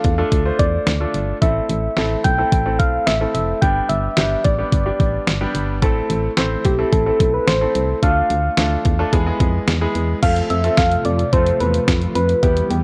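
An up-front, sampler-style 12-bit drum machine drives this melancholic, nocturnal synth-pop fragment at 109 BPM in a straight 4/4, its thumpy kick and fat snare joined by hi-hat and crash cymbal. Above it, a gentle, keys-like FM lead carries the melody between G4 and G5, its round, struck tone shaded with chorus and vibrato. A polished baby grand piano supplies clear, present accompaniment, while a punchy, dark FM bass with a fast, decaying attack anchors the low end. The harmony moves through Dm, Am, G, Am, Dm and E before settling on F at 10.2 seconds, where a mellow string-machine cello part enters in the background with soft-attack, sub-octave sawtooth chords treated with phaser and ensemble chorus. The whole recording sits in a moderate plate reverb and carries the worn, warbling pitch drift of old cassette tape, and it is cut from a longer piece.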